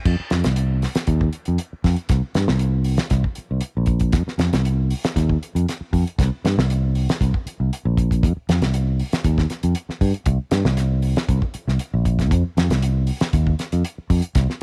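Joyful and hypnotic, this short afrobeat excerpt in 4/4 pairs a fingered electric bass with a damped 70s drum kit, both playing throughout and sitting up front in a dry sound. The bass is round and direct, its amped tone moving in a low register, while the acoustic kit offers a fat snare, a tight kick, hi-hat and a dark crash cymbal.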